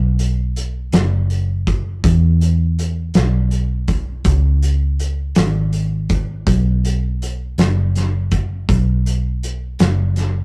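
A dark, foam-muted electric bass opens this short cut from a longer six-eight pop ballad, its round, amped tone sitting up front as it moves between F#1 and E2 from 0.0 seconds. A loose indie drum kit joins at 0.2 seconds with hi-hat, kick drum and snare drum. The kit's acoustic sound fills a pumping studio room, with a medium-tuned snare, a punchy kick and a warm, rolled-off top that also sits up front. The mood is heartfelt and swaying, at 54 BPM counted in dotted quarters with a straight 6/8 feel and tuning set to A4 = 442 Hz. The passage stays in a single section through to 10.4 seconds. Light reverb, tube saturation and the rough character of a rehearsal-room recording give the sound an unpolished edge.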